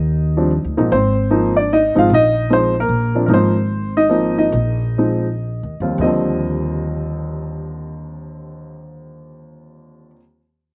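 A baby grand piano and a pizzicato upright bass open together on an Ebmaj7sus2 chord, setting a sophisticated, warm mood for this short jazz piano trio fragment in 3/4, swung on the eighths in Eb major at 106-152 BPM. The natural-sounding piano carries the melody up front while the woody, steel-strung bass sits close beneath it through chords like Ab6 and Bbsus4, and the pulse slows from 3.3 to 6.0 seconds before settling onto a lush Ebmaj13. The sound is dry and intimate, with hardly any reverb or room ambience, and the bass stops at 10.1 seconds, just before the piano ends at 10.2 seconds.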